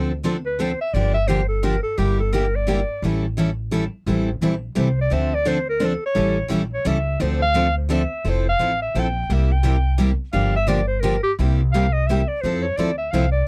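A breathy, scooped clarinet solo with a smooth top and vibrato leads this bittersweet yet fiery jazz manouche swing in 3/4 from 0.5 seconds, carried by a woody, thumpy gut-string upright bass played pizzicato up front, a bright picked concert guitar with finger squeak, and a full-bodied jumbo guitar with fresh strings set farther back, all captured in a dry, close 1970s-style studio sound with light reverb.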